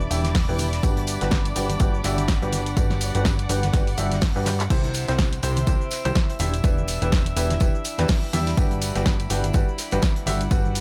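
Piano house at 124 BPM in G major with a feel-good, joyful swing, where a brilliant, worn grand piano riff pumps through a low-pass filter and delay over an overdriven, punchy electronic kick, a layered house drum kit with bright hats, a plucky, funky analog bass, a very quiet gritty soul kit, soft-handed tambourine and congas, and floating, distant chamber strings, while veiled, con sordino violins sustain chords until a drum fill at 4.5 seconds launches the drop at 4.7 seconds.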